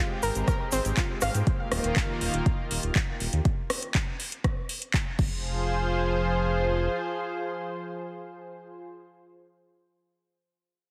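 A lush, thick unison pad leads this dreamy, expansive progressive house excerpt at 121 BPM in F minor, its detuned sawtooth chords sitting up front with a slow attack, vintage warble and chorus, pumping under sidechain through 8.9 s. The harmony moves from Abmaj7 to Ebadd9 and settles on Fm at 5.2 s, just before the track shifts into its second section at 5.4 s. A round, warbling analog pluck spins bright arpeggios with dub echo only in the opening 1.3 s, alongside a grainy, close and dry tube shaker in the background. Beneath, a round, dark analog bass blending sawtooth, sine and triangle holds deep sustained notes, while a tape-warm electronic kick sits up front and a house kit adds overdriven handclaps, rim clicks, a crash and metallic hats that pump with the sidechain, the drums dropping out at 5.3 s. A lush hall reverb opens the space, though the mix carries a heavily compressed, radio-like sound.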